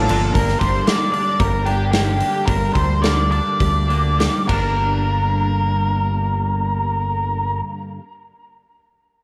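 A straight 4/4 pulse between 97 and 116 BPM drives this moody, bittersweet indie rock excerpt in G minor, cut from a longer piece and opening on a G minor chord, with the tempo slowing through its first section. A big acoustic rock kit sits up front with punchy kick, medium-tuned snare, hi-hat and bright crash cymbals in a natural, roomy sound, dropping out at 4.6 seconds as the second section arrives at 4.8 seconds. Beneath it, a growling fingered bass, overdriven and direct, holds the low end up front. Two picked twelve-string electric guitars play a compressed riff in the background: one mellow and washed in lush chorus, the other twangy and glassy with ensemble chorus and tape echo. Over them, a dark, fuzzy octave-fuzz lead guitar carries the melody with distortion and tape echo. A wet spring reverb adds a lingering, shimmering space.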